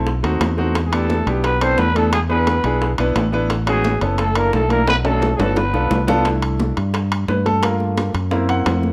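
Set in light reverb, this lively, sunny Afro-Cuban jazz excerpt at 174 BPM puts an up-front vintage concert grand piano and a round, dark fingered electric bass against ringing high-tuned congas and tight, compressed bongos in the background and close, dry metal-shell timbales, while a raspy, growling trumpet enters with the melody at 0.9 seconds over a breathy, whispered trombone, a drum fill arrives at 4.9 seconds and the piano takes a solo from 6.3 seconds.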